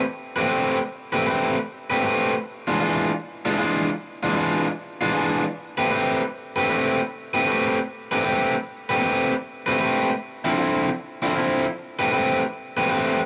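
Blues with a swung 4/4 feel, mournful and smoky, in which a single bright, overdriven electric guitar plays a picked solo up front from 0.4 to 13.2 seconds through Am9, E7b9 and Dm9 harmony, its tone trailed by tape echo and set in a wet studio ambience in this short excerpt from a longer piece.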